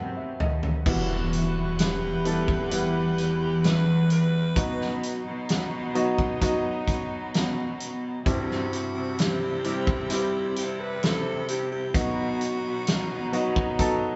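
A drum fill and a grand piano flourish open this slow, heartbroken pop ballad, with bowed strings and a cello section already sounding beneath them over a B chord. At 0.9 seconds a growling alto saxophone takes the melody in a breathy, raspy jazz style, close-miked and laced with vibrato, while an electronic impact lands under the move to E minor add9 and lingers until 4.6 seconds. The grand piano supplies polished, short-sustained accompaniment, and the string section holds smooth, reedy chords with a gut-string, period-style tone. An earthy, distant cello section carries the bass line with light vibrato, and the loose acoustic kit sits up front with a fat snare, punchy kick, hi-hat, toms and crash, its top rolled off. The band plays together in a moderate stone room, the harmony drifting through B and C before settling on B as this melancholic excerpt cuts off.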